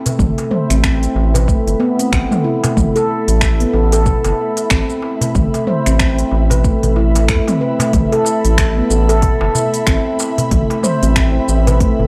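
This organic downtempo piece, cut from a longer work, has a warm, hypnotic mood and a swung 4/4 groove built on a single Amadd9 chord. Up front, a ringing stainless-steel handpan plays meditative arpeggios through tape echo, while a round analog bass, mellow and deep with an evolving, wave-folded tone, sits alongside it, pumping from sidechain compression. Behind them, an ethereal, airy pad holds sustained chords, its detuned unison voices thickened by ensemble chorus and its own reverb, and it carries the same sidechain pumping. The rhythm pairs an overdriven electronic kick, re-recorded in a large room, with an electronic kit of finger snaps, crisp hi-hats, shaker and toms, both given overdrive and studio reverb. A metal-shelled darbuka adds acoustic live-room colour, and the whole recording has a dry, gritty hardware character.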